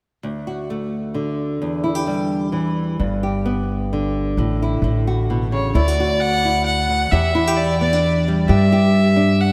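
A smooth, bowed fiddle with light vibrato enters at 5.5 seconds to carry the melody up front through a diffuse ambient delay, over a small, fingerpicked nylon-string guitar with a subtle chorus and a woody, thumpy pizzicato upright bass that joins at 3.0 seconds, giving this gentle, nostalgic folk piece in triple metre a dreamy feel inside a lush hall reverb.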